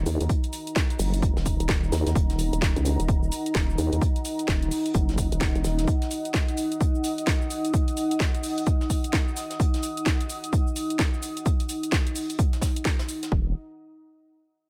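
Light digital ambience surrounds this aggressive, swaggering bass house excerpt in Eb minor at 129 BPM with swung sixteenths: an up-front, overdriven electronic kick punches beneath a cracking, bright-hatted house kit with shaker, a very quiet brushed vintage kit with a high-tuned snare adds warm, rolled-off texture, a dark, detuned sawtooth pad holds sustained chords with sidechain pumping, and a nasal, resonant vowel-sweep wobble bass with tube saturation drives the low end until 5.9 s before returning briefly at 13.3 s.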